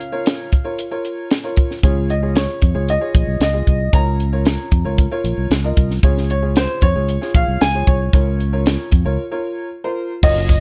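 A dry, up-front cocktail drum kit with dark cymbals, a high-tuned snare and a punchy kick drives this joyful, danceable uptempo 1960s-style soul passage at 114 BPM, as a boxy grand piano with plate reverb carries the melody over a worn, woody, slightly detuned upright piano, a fingered electric bass with a warm, amped tone joins at 1.8 s, and after a break at 9.2 s a compressed, saturated tambourine slips in at the back at 10.2 s, all in a close, dull-topped mix cut from a longer piece.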